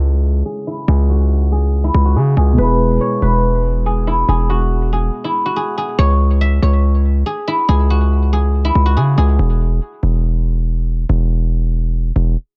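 A half-time hip hop groove at 141 BPM in 4/4 rests on a punchy, heavy 808-style bass with a sine body, a noise layer, a fast attack and a decaying tail, sitting up front throughout this melancholic, menacing C# minor clip. A silvery, ringing guzheng played with fingerpicks carries the melody, while a dark, boxy grand piano stays in the background until 6.0 seconds; both are low-pass filtered and fed through analog delay. A filter sweep runs through the opening section over C#m and E, the harmony moves to C#madd11 at 6.0 seconds, and a break from 9.4 seconds drops the chords in a dry, echo-heavy mix.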